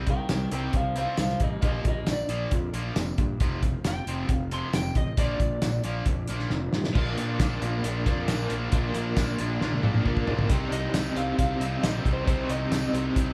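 This swaggering, driving slice of classic rock, cut from a longer piece, sounds like a band playing live together in one large studio, with a moderate reverb around it. A cloth-damped, thuddy drum kit sits up front, its fat snare, tight kick, dark cymbals, hi-hat, toms and tambourine rolled off at the top, with fills marking the turns between sections. Beneath it, a fuzz-soaked fingered bass growls through an overdriven amp, while a double-tracked, bright, picked electric guitar drives a distorted riff. A slightly broken-up slide guitar carries the melody as a solo until about 6.0 seconds. A second double-tracked, compressed guitar riff with tremolo enters at 6.9 seconds, and the slide returns at 10.7 seconds. Far in the background, a very quiet tonewheel organ holds smooth, clean chords through a rotary speaker, with key click and chorus vibrato, as the harmony moves from C minor through B-flat and F add9.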